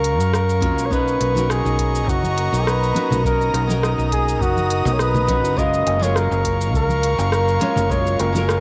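Sunset chillout at 103 BPM in B lydian, this blissful excerpt has a jazz-style flugelhorn with vibrato and a smooth top carrying the melody. Beneath it sit a fingerpicked flamenco guitar with audible finger squeak, a soft, airy, breathy chorused pad, and very quiet, ringing concert harp arpeggios, as the harmony moves from F#maj7 to Bmaj9 at 0.9 seconds and back at 5.6 seconds. An up-front fingered electric bass plays alongside a smooth R&B kit of hi-hat, rim click and shaker, joined by a dry, deep electronic kick from 0.6 seconds and bright congas in the background, while the flugelhorn and guitar carry cassette tape grain and analog delay, the pad also passes through tape, and the home cassette recording sits in light reverb.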